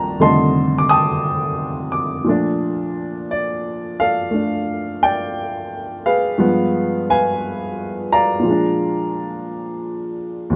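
A warm, woody upright piano sits up front, playing solo jazz alone from start to finish across a range from C2 to Eb6, at a relaxed 58 BPM in 4/4 with a gentle swing on the eighths. This short excerpt from a longer piece has a playful, easygoing mood, moving through F13, Bbmaj7, G7b9 and Bb7 chords. A moderate club reverb gives the natural piano tone an intimate sense of space.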